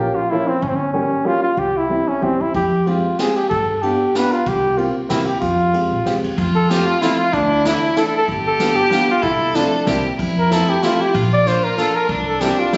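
Whirling and bittersweet, this musette waltz excerpt swings along at 189 BPM in 3/4, turning from F harmonic minor to F major at 6.4 seconds, as a warm, lightly vibratoed flugelhorn with scooped notes sings the melody up front over a clear, woody, slightly detuned upright piano, a dark, thumpy pizzicato upright bass, and a distant, roomy brush drum kit with boomy kick that enters at 2.5 seconds, joined at 6.4 seconds by a rich, focused bowed violin line, all set in a recital-hall reverb with a phone-recorded, compressed sound whose top is dulled.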